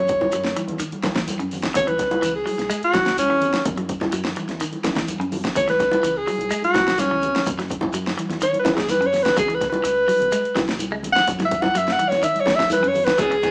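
A bright, punchy alto saxophone solos up front through this intense, driving afrobeat excerpt, close-miked in a pop style over chords moving between F#5 and C#m7. Beneath it, a twangy, slightly broken-up electric guitar picks arpeggios, an overdriven electronic drum kit hits with a punchy kick and fat snare, and a dark, round fingered bass, ringing congas and a grainy shekere sit in the background. A second, warmer guitar adds stabs only at the very end, from 13.2 seconds, and the band sounds as if playing live in one room through a small speaker, with moderate large-studio reverb.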